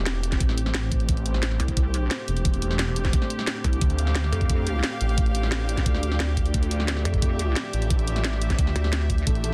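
A swirling, thick phased saw bass with overdrive sits up front in this dark, aggressive excerpt of technical drum and bass at 176 BPM, moving from Am to Dm over a knocking electronic kick, cracking snare and bright hi-hats, with a saturated pulsing pluck wobble bass with chorus entering at 1.6 seconds, a deep, moody ambient pad and a rich, intimate chamber string section both pumping to the sidechain, and a soft felt-muted upright piano arpeggio surfacing at 9.3 seconds in a dry, dense, heavily limited mix.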